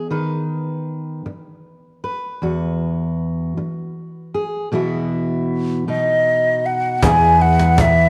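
Acoustic folk in E major, pastoral and peaceful at a slow 52 BPM in a straight 6/8, opens on an up-front, full-bodied fingerpicked dreadnought guitar moving through B/D#, Eadd9 and Bsus4, before an airy wooden flute with vibrato and a crisp attack enters at 5.9 seconds, and a dark, woody pizzicato upright bass and a cajon with faint snares join on the E chord at 7.0 seconds, all set in a moderate echo-chamber reverb in this short cut from a longer piece.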